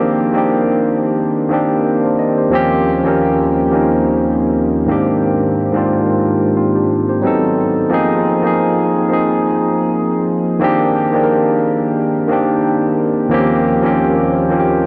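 A barky tine electric piano plays alone throughout this smooth, introspective R&B fragment, its bright, clean tone pushed through a combo amp and placed up front, with tape echo trailing its phrases across a span from Eb2 to F5. The feel has a gentle sixteenth-note swing, and the harmony moves through lush extended chords such as Cm9, Eb13 and Abmaj9#11, passing through Adim7 and Bb9sus4 before returning to Cm9 near 10.6 seconds. A huge ambient reverb with a long tail soaks the mix, giving this short piece cut from a longer work a dreamy, suspended atmosphere.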